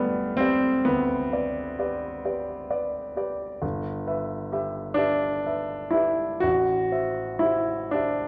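Yearning and melancholic, this brief fragment of a romantic classical nocturne features a solo baby grand piano, polished and up front, unfolding in a rubato lilt in 12/8 through G, Em/G and Am7 harmonies, bathed in a lush recital hall reverb and colored by the warbling pitch drift of worn old cassette tape.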